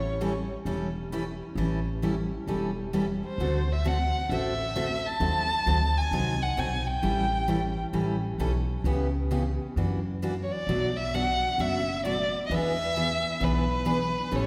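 Jazz manouche swing at 132 BPM in A mixolydian, this lively fragment from a longer piece sets a dark, growly pizzicato upright bass and a bright, full-bodied picked jumbo acoustic guitar, finger squeak audible, under a single bowed violin that sounds briefly at the start and returns at 3.3 seconds, up front with soft-attack vibrato and expressive portamento, as the changes move from A7 through D7 and D#dim7, back to A7, then through C#m7b5 and F#aug7 to Bm7 and E7 in a wet concert-hall reverb.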